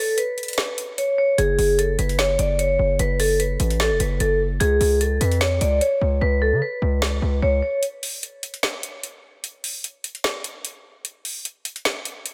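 A ringing, metallic vibraphone struck with medium hard mallets carries the melody, its slow motor vibrato softened by a low-pass filter and trailed by tape echo for a vintage, band-limited color. This is a menacing, eerie trap cut from a longer hip hop piece, moving at 149 BPM in 4/4 with a half-time feel. A distorted 808-style bass arrives at 1.4 seconds, heavy and aggressive, with a saturated sine tone, a noise layer and a fast attack that decays under a harmony shifting from F#m to C#7. The electronic trap kit, with its woody snare and metallic hats, sits up front alongside the vibraphone and bass. After the vibraphone stops at 7.8 seconds, the drums carry on alone until 12.3 seconds. Light reverb and a digital ambience surround the mix.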